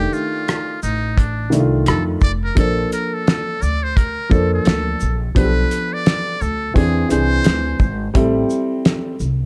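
Smooth and relaxed, this jazz-hop cut, taken from a longer hip hop piece, rides a swung 4/4 groove with a laid-back sixteenth-note lilt. A trumpet with a metal mute carries the melody as a solo, its tone buzzy and thin with a soft attack and light vibrato, before falling silent at 8.1 seconds. Beneath it, a mellow vintage grand piano with short sustain sits up front in the accompaniment, moving through rich harmony from F13 to Bbmaj7, Bm7b5, Eaug7 and Am7. A woody, thumpy pizzicato upright bass on gut strings anchors the low end, while a cloth-damped acoustic kit supplies a fat snare, tight kick, hi-hat, rim clicks and shaker with a rolled-off top. Small room reverb and a dark production give the track a cosy, intimate feel.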